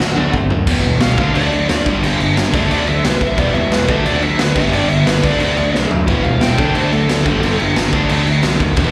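A raw garage drum fill opens this rebellious, energetic punk rock excerpt at 178 BPM, its boomy kick and gritty, saturated snare sitting up front, while a growly fuzz bass, a sludgy distorted guitar and a double-tracked crunchy guitar with slapback echo sit in the background and a very quiet distorted electric guitar lies beneath, all driving through a cycle of D, Em and G5. From 0.7 s a biting, bright lead guitar with overdrive and slapback echo takes a solo, and the drums break into another fill at 5.7 s. The whole band sounds like a live gig heard through a club PA, with small-room ambience and club reverb.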